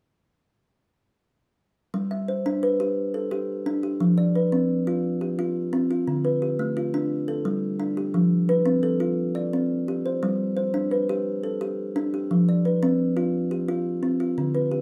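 A woody, dark-toned kalimba sits up front, its thumb-plucked arpeggios ringing from 1.9 to 14.8 seconds through a rippling, hypnotic southern African traditional groove in a straight 12/8 feel, set in moderate studio reverb and cut from a longer piece.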